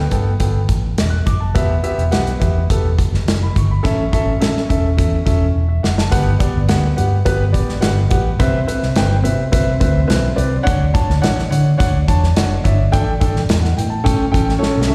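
A dark, round, punchy muted electric bass anchors this excerpt of uptempo 1960s-style soul at 105 BPM, with a danceable, warm mood. An intimate grand piano, its action noise audible and its part touched by slapback echo, comps over a tight-kicked acoustic drum kit with a medium-tuned snare, and all three sit up front. The passage shifts at 6.1 seconds from a Gadd9–Em–A progression into a Gmaj7–Cmaj7–Dmaj7 run that settles on A7sus4 and A7, with drum fills at 5.6 and 14.6 seconds, all heard as a live gig through the venue's PA with recital hall reverb.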